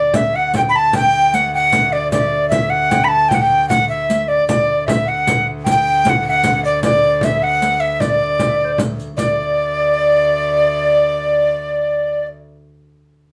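Rustic and festive, this fragment of a medieval dance moves at 102 BPM in a straight 6/8 in D major, with an airy, up-front alto recorder carrying the tune with vibrato and a soft chiff while a very quiet, breathy tenor recorder adds a mellow, tongued second line that wavers unsteadily. Beneath them a clear, fretted viola da gamba holds a bowed, ringing drone on D2, and a small, bright frame drum struck with hard hands plays alongside a dry riq with bright jingles until both drop out at 9.4 s, shortly after a new section begins at 9.2 s. The players sound live together in one room, wrapped in a wet studio reverb.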